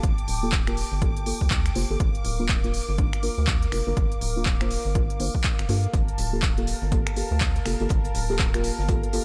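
A punchy analog kick, re-recorded in a small room, leads this smooth deep house fragment at 122 BPM in G minor, with a 16th-note swing and a warm, smooth mood over a Gm9 chord. Beneath it, a rubbery, hollow square bass with a plucky filter and dark tone pumps against the kick, while a layered electronic kit adds finger snaps, handclaps and silky hi-hats. A vintage, detuned pad holds sustained chords with a warbling chorus and sidechain pumping, and a lush bowed violin section with expressive vibrato sits far in the background. From 0.4 seconds, soft, deep chord stabs with chorus and tape echo drift through a filter sweep. At 5.9 seconds a very quiet acoustic jazz kit joins with hi-hat and a high-tuned snare, all set in a digital ambience as this passage from a longer piece plays out.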